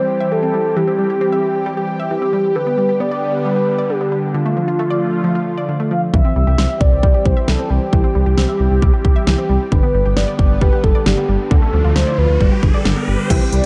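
A mellow, horn-like synth lead carries the melody from the start, its round, sustained tone softened by chorus and a gentle vibrato as it sings over a bright, wistful synth-pop excerpt at 134 BPM in C major. Beneath it, a lush unison pad holds thick, detuned chords treated with chorus and phaser, while an analog pluck spins out arpeggios with a tape echo trailing each decaying note. At 6.1 seconds a punchy pop drum kit arrives up front with a fat snare, crisp hats and crash cymbal, joined by a smooth sawtooth bass with a hint of ring modulation. A riser builds from 11.0 seconds under the chord cycle of C, G and Dm, and at 13.3 seconds muted, felt-like synth keys slip in just as the fragment cuts off. The production is dark and warm, with light reverb and a digital ambience framing the layered synths.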